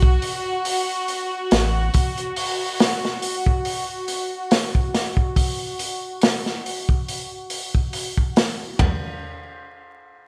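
A gritty, saturated breakbeat kit with dark cymbals and a tight kick drives this cinematic, melancholic trip hop excerpt at a swung 70 BPM, as a round sine sub bass sounds only until 1.9 s and a pure, floating violin section holds sustained chords under a filter sweep through 8.8 s, all in a dry, rough home-demo mix dusted with vinyl crackle.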